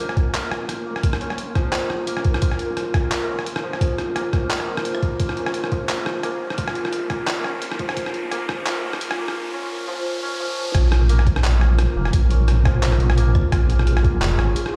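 A deep, dark wobble bass sits up front in this heavy, tense half-time drum and bass piece, its detuned sawtooth and sine tones thickened by chorus and tube saturation. Above it, a hammered santur plays shimmering, ringing arpeggios coated in vintage 12-bit sampler grit and tape echo, while a pulsing, tempo-synced texture of detuned triangle voices hovers softly in the background with chorus and its own reverb. A boom bap sampler-style kit of handclaps, hi-hat and rim click, pitched down, compressed and gritty, carries a swung sixteenth-note feel alongside a thumpy electronic kick, both re-recorded in a large room. The passage is a build-up with a filter sweep, joined by a faint electronic riser at 4.5 seconds; the kick drops out at 8.6 seconds and returns with the drop at 10.7 seconds. The whole mix sounds as if played on a big sound system in a bare stone room, with light digital ambience, and is cut from a longer piece.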